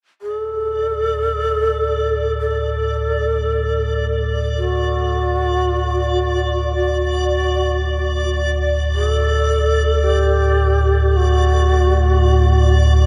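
In a straight 4/4 feel, this cavernous, unsettling dark ambient drone piece opens at 0.2 s with a breathy, bamboo-toned shakuhachi melody, tongued with chiff and vibrato and trailed by delay, set over an ominous, rumbling drone up front and a reversed, detuned granular texture that swells brightly above, all held within a huge, dark reverberant space.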